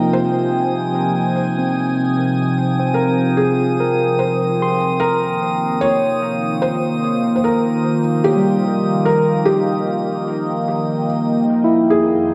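Heard through a wet echo chamber with a 2.2-second tail, this echo-heavy ambient passage, cut from a longer piece, feels serene and spacious at 74 BPM in 4/4 with a straight feel, set in F minor and moving from Fm7 to Eb at 5.0 seconds and to C7b13/F at 11.5 seconds. A soft, felt-muted upright piano carries the melody between G4 and Db5, its mellow, intimate tone showing audible action noise and short sustain, dressed in shimmer reverb and dub echo. Up front, an evolving wavetable pad holds dark, detuned, warbling sustained chords from F2 to Ab5 through phaser, built-in reverb and shimmer reverb, with a filter sweep running across it until 11.5 seconds. An overdriven tine electric piano plays barky, gritty arpeggios from G3 to C6 through a combo amp with dub echo. Beneath it all sits a very quiet, tense, string-like bowed drone between C3 and F3 that stops at 11.6 seconds, while a glassy texture of drifting overtones floats high from C6 to Eb6 with chorus, built-in reverb and shimmer reverb.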